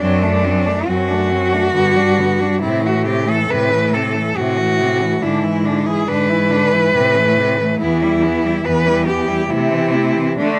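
A bowed solo cello carries the melody up front, its rich, vibrato-laden tone smooth and even with a silky top, sitting clearly above the rest of this lyrical classical piece for cello ensemble. Beneath it, a second cello sings a close, smooth inner line, while a third plays a more distant accompaniment in the lower middle register. A fourth cello anchors the bass with a focused, vibrato-tinged sound that still comes forward in the mix. The music moves in a rubato 3/4 at about 69 BPM, its serene, warm mood shaped by harmonies that pass through D7/F#, G, Am, E7/G# and Em before settling on Am/C. Light reverb gives the four bowed voices a soft sense of space across this 10.6-second passage drawn from a longer work.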